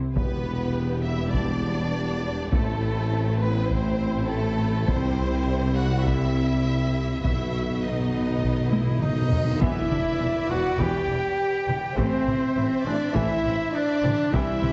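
A dramatic, epic orchestral film-score cue in E minor at 102 BPM, cut from a longer piece, where a dark, distant violin section carries the melody over background violins and violas, mellow French horns holding sustained chords, and a bass of quiet cellos, woody double basses and tuba, all driven by a heavy-sticked taiko ensemble. At 7.2 s round, soft-mallet timpani add a fill ahead of a drum fill, reverse cymbal and huge, bright impact that open the second section at 9.6 s, while an airy flute line and punchy trumpet stabs join in just before, at 9.0 s. The sound sits in a wet scoring-stage reverb but is heavily compressed and dulled like a radio broadcast, with its highs cut off.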